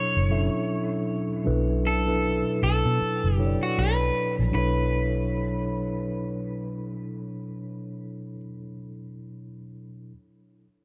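A slow 78 BPM R&B groove in 4/4 with a 16th-note swing sits in B minor, smooth and late-night in mood, opening on a Bm11 chord in this short cut from a longer piece. A twangy, slightly broken-up picked electric guitar carries the melody up front, while a mellow tine electric piano supplies the accompaniment and rings on alone until 10.1 seconds; both are bathed in dub echo. Underneath, a dark, round, foam-muted fingered electric bass enters at 0.2 seconds, all within a light reverb and an echo-heavy mix.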